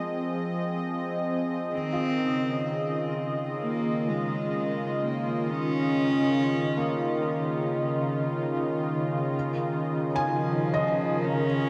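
Bathed in a huge, wet reverb with an 8.0-second tail, this melancholic, spacious ambient fragment opens on a smooth, detuned sawtooth pad, bright and up front with chorus and tremolo, holding sustained chords over Fm7 and Db69. Beneath it, a felt-muted upright piano fades in with mellow, intimate arpeggios through tape echo, its thin felt and audible action noise sitting in the background. At 1.7 seconds a single bowed cello enters with a pure, floating sul tasto melody, its soft attack also carried by tape echo.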